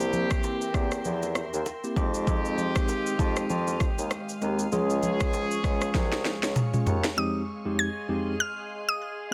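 A dense, heavily limited mix with little reverb carries this sultry, mellow afrobeats excerpt in F minor at 98 BPM with a swung 16th-note feel, where a gritty, sampled afro-pop kit with a deep kick and a sharp, softly clipped snare sits up front over background congas and bongos, a distant, roomy bassoon bass, a tremolo-laced tine electric piano, a glassy, ethereal FM pad with ensemble chorus and a clear, punchy horn section, until a drum fill from 5.9 s leads to 7.2 s, where a woody, round mallet-like synth pluck takes a high melody.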